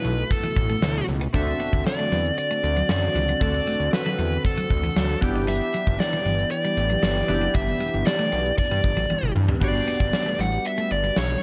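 A gated 80s drum kit drives a straight 4/4 beat at 116 BPM, with a tight kick, bright cymbals and a big gated-room sound, while a fat, saturated sawtooth bass sits up front beside it in this glossy, romantic 1980s-style pop excerpt. A dark, overdriven lead guitar carries the melody over a clean, compressed electric guitar riff, round detuned analog keys and a brassy, bold pad of sustained chords, the keys and pad both treated with chorus, as the harmony moves from Asus2 through D7 to G6. A drum fill at 9.1 seconds leads into a new section on Gmaj7 at 9.6 seconds.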